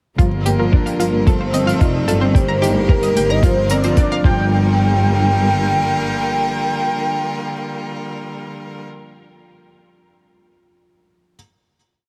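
A melancholic, cinematic piano-and-strings electronica build in G minor at 111 BPM opens with a muffled, thumpy four-on-the-floor electronic kick up front, a distant brushed hi-hat, long gliding bowed notes from a dark double bass section, a clear string quartet holding pumping sustained chords over Gm7, F7/G and Eb/G, and a round analog pluck with 12-bit grit looping a six-step arpeggio that drifts against the bar. A velvety, detuned synth lead with chorus and delay carries the motif-based melody through a filter sweep, while a soft, felt-muted upright piano with audible action noise repeats an eight-step riff in light studio ambience. The drums fall away just before the final hit at 4.5 s, the pluck and bass drop out by 6.1 s, the lead and quartet hold until 8.9 s, and the piano plays alone until 11.4 s.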